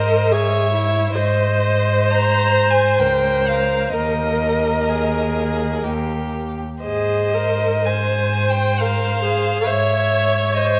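Classical chamber music for string quartet, this tender, serene passage from a slow romantic movement, cut from a longer piece, moves in a rubato three-beat lilt with uneven beats. A clear, close first violin sings the smooth, even melody up front with vibrato, while a distant second violin shapes an expressive second line with portamento and the viola supplies accompaniment with its own sliding, vibrato-laden phrasing. Beneath them a rich, intense cello anchors the bass up front with a smooth top, and the four bowed players sit in a moderate scoring-stage reverb.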